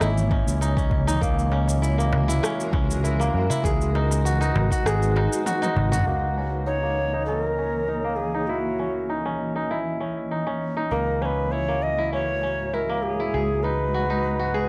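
Organic downtempo at 99 BPM in C# dorian, earthy and warm in mood, heard as a short cut from a longer piece. A cloudy, detuned granular pad holds sustained chords throughout with built-in reverb and sidechain pumping, while a ringing, fingerpicked kora plays up-front arpeggios through a low-pass filter and analog delay, and a growly, amped fretless electric bass anchors the low end with its own pumping. For the first six seconds, an overdriven deep house kit of rim click, shaker and toms joins a deep, layered electronic kick and a crisp, very quiet metal-shell darbuka; the kick drops out at 4.9 seconds before a drum fill closes the opening passage. From 6.7 seconds a bright, reedy cedar flute with chiff and vibrato carries the melody through tape echo, as filter sweeps move across the kora and the pad. The chords circle from C#m69 through F#9/C# and G#m7, settling on G#m7/C# near the end. 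The whole has a dry, gritty cassette character with light digital ambience.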